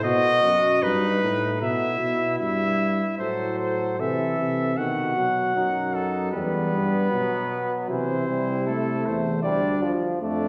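A classical imitative brass canzona at 77 BPM in 4/4 with a stately, joyful mood, cut from a longer piece. A warm, soft-attacked trumpet carries the melody up front, while a vintage-toned flugelhorn with light vibrato sings the second line and a dark euphonium, also up front, anchors the bass. At 3.2 seconds a clear, present trombone joins with accompaniment, and a recital-hall reverb lends the ensemble a resonant, spacious glow.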